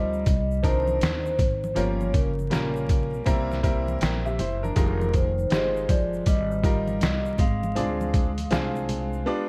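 This smoky, cool jazz-hop excerpt moves at a relaxed 80 BPM with a swung 16th-note feel in C minor, passing through rich minor-eleventh and half-diminished chords under a dark production with vinyl crackle. A soft-mallet vibraphone carries the ringing, slow-vibrato melody through tape echo, while a clean, fingered electric guitar adds a low second line and a brilliant, vintage upright piano supplies the accompaniment. A woody pizzicato upright bass on gut strings anchors the bottom, close, dry congas and egg shaker sit in the background, and a gritty, pitched-down sampler-style drum kit with a thumpy kick sits up front from 0.3 seconds until it drops out at 9.3 seconds.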